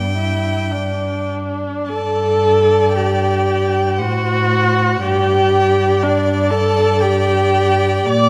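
Heard in a moderate concert-hall reverb, this cut from a longer, slow romantic string-quartet movement in 3/4 unfolds lyrically and warmly at 48-62 BPM with rubato, tuned to A4 = 436 Hz: a clear, focused violin sings the melody close by, a dark second violin traces an expressive line with portamento, an up-front viola gives soft-attacked accompaniment with vibrato, and a smooth-topped cello holds the bass, with a new section opening at 1.9 s and the harmony turning to F#dim/A at 4.0 s.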